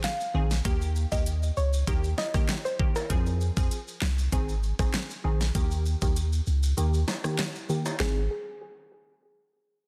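A straight 4/4 dancehall groove at 98 BPM in Ab major, led by an up-front, layered electronic pop kit with a knocking kick, fat snare, crisp hats, handclaps and rim click, and by a deep, punchy sine sub bass with a pitch-drop attack that enters at 0.3 seconds. Over a filter sweep, a mellow, detuned wavetable chord stab moves through Ab, Eb and Fm, while a soft, round, dark pluck with chorus and digital delay plays a brief melody. Bright, distant maracas and timbales sit in a large room behind them, and the kick drops out between 6.8 and 8.0 seconds in this sunny, summery excerpt from a dense, heavily limited modern master.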